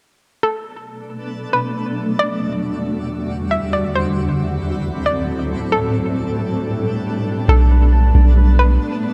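The half-time hip hop groove sits at 136 BPM in 4/4, its spacious, ethereal mood cut from a longer piece and moving through Bm7, Em9, D13 and A9sus4 before returning to Bm7. A hollow, nasal square-wave pluck carries the melody from 0.4 seconds, bouncy and up front, treated with chorus and tape echo. Beneath it a shimmering ambient pad holds sustained chords with a slow attack, long release and an octave-up shimmer, while a faint twinkling granular texture sparkles in its own built-in reverb. At 7.5 seconds a fingerpicked concert harp arrives with ringing arpeggios through tape echo, joined by a soft, round 808-style bass on B1 that sits deep and dark at the front of the mix. The production is dark and warm overall, with a light reverb framing the airy layers.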